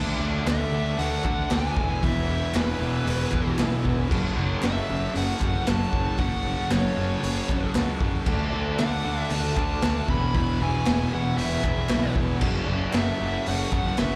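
Garage rock at 116 BPM in a straight 4/4, rowdy and swaggering, cut from a longer piece heard live through a club PA, with the chords cycling D, E and F#m. A bright, double-tracked fuzz guitar riff and an overdriven, punchy picked bass drive it from the start over a buzzy vintage combo organ holding light-vibrato chords in the background, and at 0.5 seconds a gritty, up-front drum kit with dark cymbals and crisp group handclaps join in. Above them a fuzz lead guitar carries the melody through analog delay.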